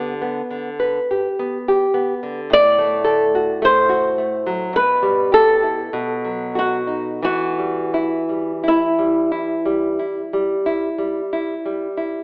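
This romantic guitar duo, cut from a longer piece, unfolds in an elegiac, yearning mood with a freely breathing rubato feel in 4/4. The flamenco guitar carries the melody up front, fingerpicked in a warm flamenco voice, with finger squeaks audible along the strings. Beneath it, the nylon-string guitar supplies a dark, full-bodied fingerpicked accompaniment in a deep classical style, also placed up front and reaching into a low register. The harmony moves from G through F#dim/A and Em/B to B7 before settling on Em at 7.3 seconds. The melody falls away at 11.3 seconds, leaving the accompaniment to ring alone until 12.2 seconds. A moderate scoring-stage reverb surrounds the pair, while a narrow telephone-like sound colours the whole recording.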